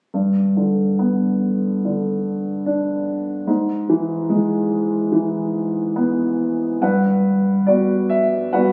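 Peaceful and tender, this short excerpt of lyrical classical solo piano in G major drifts along at 68-75 BPM in 4/4 with a rubato feel. A concert grand carries everything alone from 0.1 to 8.7 seconds, ranging from G2 to F#5, its tone warm with deep bass, a boxy color and long sustain, sitting up front. The harmony opens on G, moves to E/G# at 3.5 seconds, and settles onto Gmaj7 as a new section begins at 6.8 seconds. A moderate concert hall reverb surrounds the instrument, though the sound was captured on a phone in the room, adding a club-like ambience. The result is intimate and unhurried, clearly cut from a longer piece.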